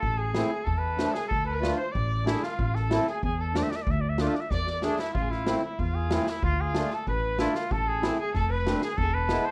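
Through worn, warbling old cassette tape and a moderate studio reverb, this festive, soulful klezmer fragment in D dorian sharp4 moves at 94 BPM in 2/4: a bright, nasal cornet with straight mute and plate reverb leads up front over a focused, smooth-topped bowed violin second line with vibrato, a reedy, sweet accordion with light tremolo tuning that enters at 0.3 s, a woody pizzicato upright bass, and a polished street-band drum kit with boomy kick and medium-tuned snare that plays a fill from 4.5 to 5.1 s.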